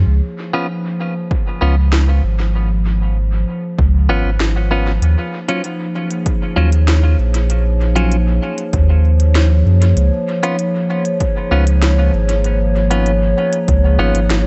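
A dry, dark-topped mix with little reverb frames this spacious, deep ambient dub fragment at 97 BPM, where a round sine sub bass sits up front beneath a warbling, detuned, lo-fi pad with chorus and its own built-in reverb, holding sustained chords that move from Db7 to Ebm9 and back. A bright, twangy clean electric guitar adds picked stabs through dub echo from 0.5 seconds. A punchy, overdriven electronic kick drum joins at 1.3 seconds, and an electronic kit with a woody snare and crisp hi-hats, also sent through dub echo, enters at 1.9 seconds.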